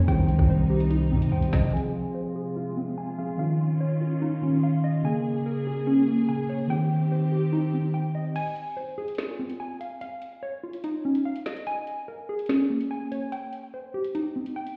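A warbly, detuned dusty pluck weaves lo-fi arpeggios through this cold, dark half-time drill passage, backed by a clean tine electric piano and intimate, softly bowed sul tasto strings until about 8.4 s, when a drill kit with a hard-clipped kick, woody snare and metallic hats returns for the break, while a saturated, aggressive 808-style bass hits only in the opening 1.7 s, all of it heard muffled as if through a wall in a stone room.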